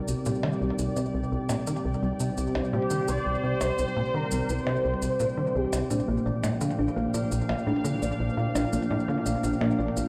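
Hypnotic and mysterious, this short cut of ambient, sequencer-driven space music in C minor at 85 BPM sets a punchy, ring-modulated sequencer bass riff and tape-warm shaker and percussion blips beneath a bright, evolving resonant pad on sustained Cm7 chords, while a bubbling stepped-filter texture fades in from the background, an expressive synth lead with vibrato sings from 2.7 to 5.9 seconds, and a round, tine-like pluck takes over with arpeggios as the harmony moves to Bb, all washed in plate reverb and stone-room ambience.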